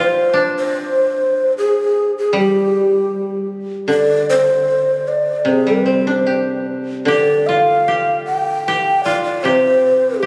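A breathy, hollow shakuhachi carries the melody up front from the start, its straight, tongued tone and audible chiff sounding close and mellow in this calm, austere piece of Japanese chamber music, cut from a longer work and taken at a rubato 76 BPM in 2/4. Two fingerpicked kotos sound dry and woody beneath it: one plays a second line that drops out at 2.8 seconds and returns at 7.1 seconds, while the other, set more forward, enters at 2.3 seconds with accompaniment. The room, captured on a phone, adds a moderate church-like reverb with a long tail.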